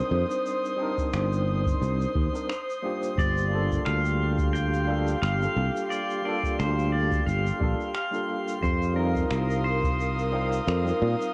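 A growly, punchy fretless electric bass sits up front in this relaxed sunset chillout excerpt at 88 BPM with a gentle 16th-note swing, beneath a gritty overdriven tine electric piano with fast tremolo and analog delay, an airy, breathy pad with chorus, a glassy harmonics texture drifting in the background, dark brushed shaker and finger snaps, and a deep electronic kick from 1.0 s, while a twangy pedal steel guitar with slide and volume swells carries the melody from 3.2 s over Cm7, Gm7 and F7sus4, with cassette-tape coloring on the piano, pad, harmonics and percussion and a light reverb on the home cassette recording.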